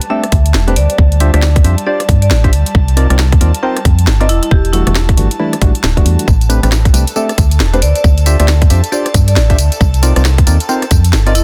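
UK garage in a two-step groove at 136 BPM with a 61% swing on the 16ths, this soulful, late-night excerpt moves through minor eleventh chords. A hollow, dark FM bass and a tight, up-front electronic kick anchor the mix, with a garage kit of cracking snare, warm hats, rim click and tambourine in a small room. Above them, a woody marimba melody carries 12-bit sampler grit and dub echo, chorused organ stabs add full-bodied punch, and a breathy pad sits in the background with sidechain pumping, all in a dense, heavily limited, fairly dry master.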